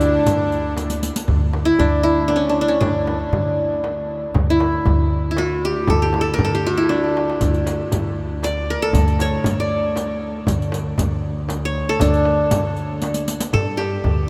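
Drenched in a huge, echoing reverb, this stately Arabic maqam ensemble piece in triple metre puts a bright-edged, plectrum-plucked qanun up front over a woody pizzicato upright bass and a focused bowed double bass drone, while a reedy accordion and a very quiet, earthy violin section sound only for the first 0.7 seconds, and a deep clay-shelled darbuka, a small frame drum and a riq with dark jingles fill out the percussion with brief drum fills.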